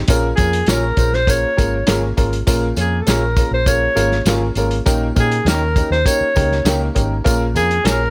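A straight 4/4 groove from a dry, muffled soul drum kit and a jingly tambourine drives this urgent 1960s-style soul fragment, cut from a longer piece, as a dark, round, foam-muted electric bass and a worn, slightly detuned upright piano with audible action noise sit beneath an up-front alto saxophone lead with vibrato, while a slightly broken-up electric guitar with subtle chorus adds picked stabs in the background of a small room.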